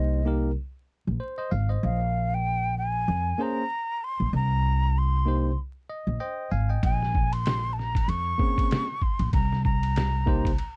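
A swung 96 BPM groove in 4/4 sets this nocturnal, cool jazz-hop excerpt in Bb dorian, with a woody, pizzicato upright bass and a bell-like, barky tine electric piano holding the harmony while a breathy, mellow flute with vibrato and a crisp, chiffy attack carries the melody. At 6.8 seconds a compressed, pitched-down sampler-style trip hop kit arrives with a thumpy kick, a medium-tuned snare, hi-hat and ride, muffled as if re-recorded in a small room, and the electric piano adds a fill just before it at 5.6 seconds. The sound is dry and close in a 1970s studio manner, dusted with vinyl crackle.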